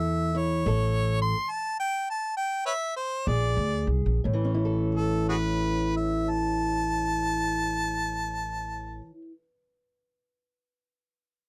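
A clear harmonica opens with a jazz-style solo over a boxy, fingerpicked acoustic archtop guitar and woody pizzicato upright bass. In this laid-back, gritty acoustic country blues in A major, the swung tempo of roughly 59-77 BPM slows through the first 4.2 seconds. The harmonica and steel-strung bass sit up front in a dry, close 1970s-style studio sound, with the harmonica's light vibrato, scooped notes and tongue slaps set against audible finger squeaks on the guitar, as the chords move from A through Bb7 and back to A before the cut ends around 9.4 seconds.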